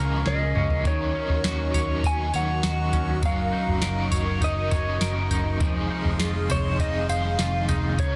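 A compressed electric slide guitar carries the melody over this haunting, hazy dream pop excerpt at 101 BPM, entering at 0.3 seconds with tape echo alongside a soft, dry vintage rhythm box that opens with a drum fill, its kit made up of deep kick, crisp snare, tambourine and toms. A bright, twangy guitar at the edge of break-up plays chorused, echoing arpeggios, an overdriven guitar adds tremolo-and-chorus accompaniment, a swirling sawtooth pad holds detuned, phased chords, and a round, punchy foam-muted bass anchors the low end, all moving through Db6, Ebm7, Gb6 and Fm7 in a moderate reverb and a dense, heavily limited master.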